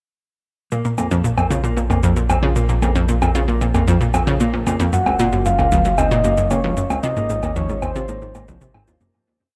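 Ambient, sequencer-driven space music at 114 BPM in Bb minor, expansive and mysterious. From 0.7 seconds a bright, detuned analog pluck sits up front with chorus and tape echo, its 7-step loop drifting against the bar alongside a dark, clean fingered electric guitar playing echoed arpeggios, a deep, sustained round bass on the roots, and a light, overdriven machine pulse of shaker and low woodblock. At 4.9 seconds a soft, octave-layered synth lead enters with vibrato, chorus and cassette-tape colour, tracing arching motif phrases before the piece fades out from 6.3 seconds under a moderate plate reverb.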